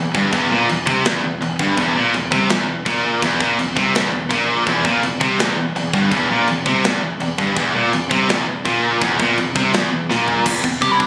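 Heavy metal at 166 BPM in 4/4, dark and relentless, cut from a longer piece. Two high-gain guitars drive the riff from the start in the low register, both bright, picked and pushed up front with distortion, over an E minor foundation. A fingered electric bass growls beneath them with overdrive and a direct, amped edge, while a tight metal drum kit enters at 0.1 seconds with a polished, airy sound, bright china and crash cymbals, a medium-tuned snare, toms and a tight kick. A drum fill at 10.1 seconds closes the opening section, and the harmony shifts at 10.5 seconds as one of the riff guitars drops out. At 10.8 seconds a nasal lead guitar with a parked wah steps forward, overdriven and picked, carrying a brief melody over the phone-captured room sound with its light reverb and small-room ambience.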